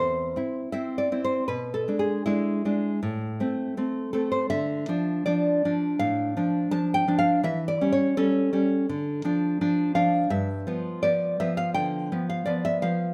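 Romantic solo classical guitar in A minor, melancholic and passionate, moving at about 82 BPM in 4/4 with free rubato and uneven beats, as an up-front, fingerpicked nylon-string guitar with a woody, old-string tone ranges from deep bass to high treble through a minor-key progression that drifts from Am toward Dm and closes on G7, all set in a moderate recital-hall reverb across this 13.1-second fragment of a longer piece.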